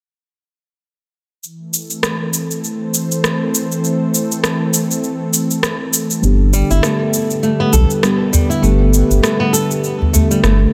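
A swung sixteenth-note groove at 100 BPM in 4/4 opens this organic downtempo passage in A minor, carried by an electronic shaker and rim click with a tape-warm, produced sound set in a large room. Entering together with it at 1.4 seconds, a smooth, detuned sawtooth pad holds sustained chords with a slow attack and chorus, moving from Am to G, and the mood feels warm and mystical. At 6.2 seconds a round, dark analog bass arrives up front, joined by muted, felt-like synth keys sitting softly in the background with chorus and delay. A fingerpicked flamenco guitar follows with arpeggios, its fresh strings and finger squeak roughened by vintage 12-bit sampler grit and trailed by delay. A deep, dry udu adds close acoustic percussion from 7.7 seconds, all within light reverb and digital ambience in this section cut from a longer piece.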